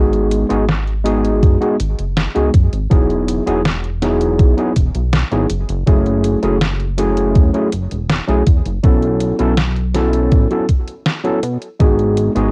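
Vaporwave with a hazy, woozy mood, this short cut from a longer piece moves at an unhurried pace in a straight 4/4. A barky, gritty tine electric piano runs through a combo amp with analog chorus and delay, carrying the chords from G#m7 through Emaj9, F#m7 and B7sus4 before returning to G#m7. Beneath it, a glossy chorused synth bass mixes pulse and sawtooth tones with a plucky filter and a mellow, evolving sustain. A detuned 8-bit drum machine supplies hi-hat and a medium-tuned snare from the start, and a thumpy, sampler-style electronic kick enters at 1.4 seconds and sits prominently at the front. Both drum parts are overdriven and treated with studio reverb and cassette tape coloring, while the whole recording has the light reverb of a home cassette recording.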